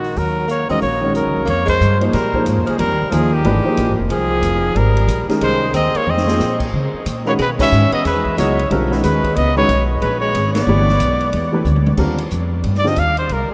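A brisk 183 BPM swing in 4/4 drives this hypnotic, searching modal jazz fragment, with a swinging big-band drum kit and a woody, pizzicato upright bass under a breathy, vibrato-laden trumpet melody and a bright, close-miked tenor saxophone second line. A natural-toned baby grand piano enters at 0.7 s with accompaniment as the harmony moves from Ebm7 through Fm11 and Dbm11 to G, marked by band accents and short drum fills. The saxophone stops at 11.6 s, and the trumpet solos from 12.0 s over Cmadd9, the band sitting in a huge, echoing reverb that suggests a vast space.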